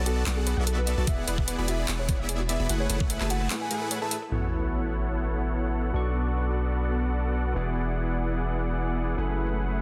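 Dense and heavily limited, with a light reverb around it, this future bass excerpt in A major moves at 148 BPM in a half-time 4/4 feel and sounds lush and playful. A huge, thick, detuned supersaw riff sits up front throughout, compressed and airy, pumping with the sidechain through a low-pass filter and tape echo, while a deep, sine-toned 808-style bass holds long, decaying notes beneath it. The opening drop pairs a dark, intimate grand piano melody, its vintage action noise audible in the background, with soft, round pluck arpeggios thickened by chorus and echo. Trap drums add overdriven handclaps and bright hats, and a knocking, tape-warm electronic kick punches through from 1.1 to 3.1 seconds. At 4.3 seconds a very quiet sub drop marks the impact, and the piano, pluck and trap kit give way to a barky tine electric piano heard cleanly through a combo amp in the background. The harmony circles through Bm7, E9 and F#m11, with A69 arriving at the start of the second section.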